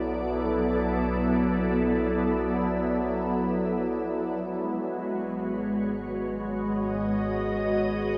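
Melancholic and spacious, this brief ambient passage drifts in free time in B dorian, cut from a longer piece. A soft, organ-like pad sits up front, holding sustained chords with slow attacks and long releases, its pure sine tone thickened by detuning, ensemble chorus, a phaser and its own reverb. Beneath it, a deep rumbling drone holds the bass throughout, its nasal, ring-modulated edge giving the low end an ominous, shadowy cast far beneath the pad. The harmony moves from Bm7 to G#m7 at 4.4 seconds, deepening the somber mood. The whole passage is bathed in a cathedral-like reverb with a 6.2-second decay, placing the sound in a vast, echoing space.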